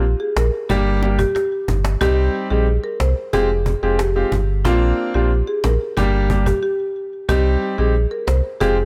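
A deep, sine-like sub bass with an octave and a softly played cajon open this hypnotic, sultry dancehall excerpt in C minor at 91 BPM, joined at 0.2 seconds by a dark, smooth marimba melody on padauk bars with delay, then by a clear, up-front concert grand piano and very quiet, low-tuned, saturated bongos at 0.7 seconds, moving through Gm, Cm, Fmadd9 and Bbadd9 in a small room before a brief break at 6.6 seconds.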